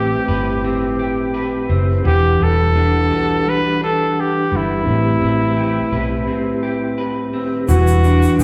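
Hazy and mellow, this short indie and bedroom pop excerpt at 85 BPM in E minor sets a clear, smooth-topped trumpet melody with vibrato up front over a dark, slightly broken-up picked electric guitar with vibrato effect, a soft, flute-like tonewheel organ turning through a slow rotary speaker, and a round, punchy foam-muted electric bass, all moving between Am9 and Em9 in a big, reverberant room as the band plays live together, with a break at 6.3 seconds before a grainy, bright egg shaker enters at 7.7 seconds.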